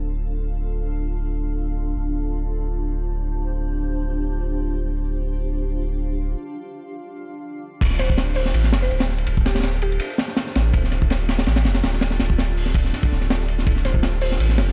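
A swung 164 BPM jungle groove in D minor opens on a blurred, detuned granular cloud pad holding a Dm7 over a thick, tube-saturated sub bass, then, after a break from 6.3 seconds, drops at 7.8 seconds into a crunchy, dark-cymbaled breakbeat kit with a punchy kick and high-tuned snare, while a woody, chorused mallet-like pluck with dub echo drifts in the background, giving this gritty, nostalgic drum and bass excerpt its atmospheric, small-room feel.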